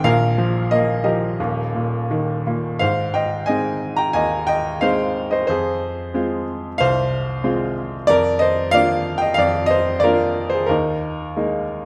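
A bright baby grand piano carries this short classical excerpt alone, its brilliant, natural tone sitting up front and spanning from a deep Eb1 to a high Bb5. The mood is sunny and warm, with a lyrical, rubato feel in 4/4 that lets phrases breathe freely. An opening passage gives way at 2.8 seconds to a second section that moves through Ab, Fm and Bb/F before settling on an unresolved Ebsus4 near 10.7 seconds. A moderate concert hall reverb surrounds the instrument with a gentle sense of space. Cut from a longer piece, the fragment ends at 11.9 seconds, still poised mid-thought.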